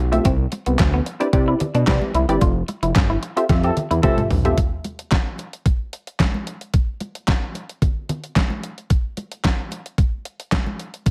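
Set in a digital ambience, this danceable, feel-good early-eighties boogie funk at 111 BPM opens on a fat, detuned sawtooth analog bass, a dark, filter-plucked polysynth comp with chorus moving from Cmaj9 to Fmaj9, a clean semi-hollow electric guitar riff with lush chorus, a thumpy, tape-tinged 8-bit drum machine with handclaps, hi-hat, toms and gated reverb, and bright, dry congas in the background, while a punchy horn section slips in at 3.6 seconds amid a band accent and drum fill that give way at 4.6 seconds to drums and congas alone until 11.1 seconds.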